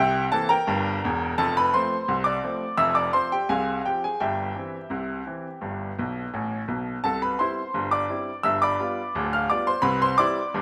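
A rough home demo mix with a moderate plate reverb frames a solo baby grand piano that sits up front, its tone brilliant and natural with a long sustain. This lively, jaunty ragtime passage in 2/4 with a straight feel is cut from a longer piece and moves through a C7, F, Fm, C/G and G progression before resolving to C by way of G7. A piano fill from 6.0 to 7.0 seconds adds a flourish, and across the passage the piano's range reaches from deep bass to high treble.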